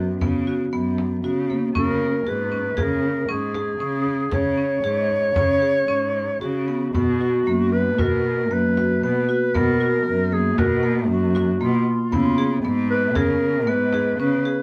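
Heard from further back in the room through a moderate studio reverb, this cut from a longer contemporary chamber piece has a restless yet hopeful mood and moves in an uneven five-beat meter with a straight feel. From the start, a marimba played with medium mallets sets out arpeggios, while a single dark, bowed cello carries the bass up front with vibrato and expressive portamento. A frame drum adds close, acoustic percussion played with soft hands. At 1.8 seconds a warm solo clarinet enters up front with the melody, its soft attack, vibrato and scooped notes giving it a jazz-inflected voice. Around 6.9 seconds the music moves into a new section that carries through to the end.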